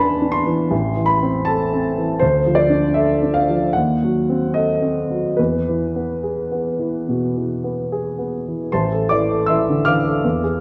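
Flowing in a rubato 4/4 at 68-83 BPM, this brooding, stormy romantic character piece in A minor is a brief excerpt for solo grand piano, its smooth, vintage tone set up front and ranging from A1 to F6, moving from A minor through D minor, a diminished chord and E major back to A minor at 8.7 seconds, heard through a wet recital hall reverb and a worn, warbling cassette tape with pitch drift.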